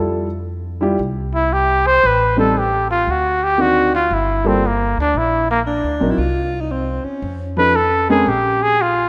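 A lush hall reverb surrounds this rough home demo mix, a short passage cut from a longer jazz piece in F major that swings in 4/4 at 115 BPM with a sophisticated air. An upright bass played pizzicato gives a woody, thumpy pulse beneath a clear, intimate grand piano whose natural sound carries audible action noise as it comps through chords from Fmaj9 and Am7b5 to D7b9 and Gm. At 1.3 seconds a trumpet steps up front with a soft attack and light vibrato, carrying the melody in a warm jazz voice. An alto saxophone adds a brief second line with its own vibrato, entering at 5.7 seconds and falling away at 7.4 seconds, while the harmony moves through Csus4 and F7alt toward a closing Bb7(no3).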